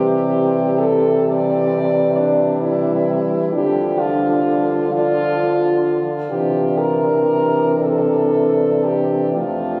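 A clear, soft-attacked French horn carries the melody up front in this serene, tender excerpt for horn quartet, a slow, rubato classical piece in 12/8 at 38-46 BPM that moves from C to Dm at 3.5 seconds and settles on C9 at 6.3 seconds. Beneath it, one mellow horn sings a second line with light vibrato, another mellow, distant horn holds a narrow accompaniment, and a smooth-topped bass horn with vibrato anchors the low end. Captured on a phone in the room and bathed in a wet, cathedral-style studio reverb with a long tail, the sound is roomy and dull at the top.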